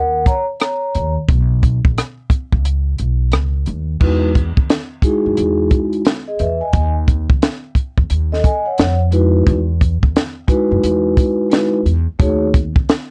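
A dry, gritty cassette-tape recording captures this smoky, mellow jazz-hop excerpt at 88 BPM with a swung 16th-note feel, as a ringing, soft-mallet vibraphone with its motor off takes a solo over woody pizzicato upright bass and a compact cocktail drum kit (entering at 0.3 seconds, with punchy kick, high-tuned snare and dark cymbals roughened by vintage 12-bit sampler grit), with a break arriving at 2.6 seconds before a new section at 4.0 seconds moves through lush chords such as Emaj9 and Fm7b5.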